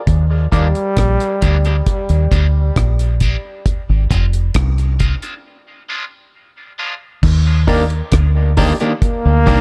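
Spacious and laid-back, this dub reggae excerpt moves at a slow 67 BPM in Eb major, cut from a longer piece and steeped in an echo-heavy studio ambience. A deep dub bass, round, foam-muted and punchy, sits up front with a dry, dark reggae drum kit whose tight kick, hi-hat, rim click and crash cymbal come across smooth and rolled-off on top. An electric guitar at the edge of break-up enters at 0.5 seconds with a twangy, slightly broken-up accompaniment, colored by warbly pitch drift, a high-pass filter and dub echo. A brilliant trombone with light vibrato states a short, present melody early on and returns near the close, its phrases trailing into dub echo. Hollow, percussive organ stabs open the passage and come back from 7.7 seconds, lying dark in the background under chorus, a high-pass filter and dub echo. A filter sweep and break shape the opening stretch over chords moving from Ebmaj7 through Ab6 and Fm6, before a new section begins at 7.2 seconds back on Ebmaj7.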